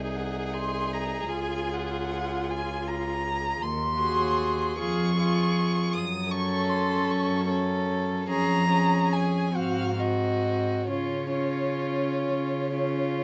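A rich, intimate second violin with an airy bow, a dark, smooth-topped viola and a warm, floating cello open together at 0.0 s, joined almost at once by a dark, woody violin carrying the melody with vibrato, all four bowed sul tasto in this tender, slow romantic movement for string quartet in 6/8 and Db major, taken with rubato at 42-54 BPM and cut from a longer piece, its pure cello bass sitting up front in a moderate studio reverb.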